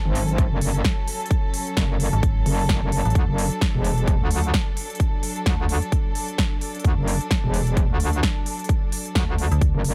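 A dark studio string section opens this swaggering, bouncy bass house excerpt, its soft-attack bowed chords played sul tasto with light vibrato and pumping under the sidechain from a close, intimate distance. Almost at once a metallic wobble bass arrives up front, an aggressive FM tone that is saturated, chorused and overdriven, sustaining low beneath the strings and ducking with the same pump. A big-room dance drum kit brings crisp hats and a punchy snare, and an electronic kick with a layered, overdriven punch sits up front with the bass, all riding a swung sixteenth-note feel. Around 2.1 seconds a second, darker metallic FM bass cuts in with a fast-attack, decaying digital tone, then returns briefly near 9.5 seconds. The harmony moves from F#m to D over a digital ambience, giving the groove a brooding, muscular edge.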